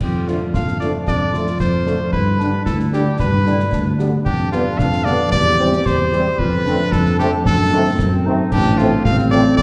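A proud, spirited military-style march for wind band in 2/4, cut from a longer piece, with a clear, punchy cornet carrying the melody up front while a dark, lightly vibrato woodwind section sings a second line from further back. A mellow, close-miked tuba anchors the bass, and clash cymbals, concert bass drum and concert snare drum play with dark cymbal tones, as soft-attack French horns and tight trombones enter at 0.3 seconds to hold background accompaniment and sustained chords. The whole band sits in a wet scoring-stage reverb heard from a distance, lending the harmony's closing turn through a diminished chord a roomy, ceremonial glow.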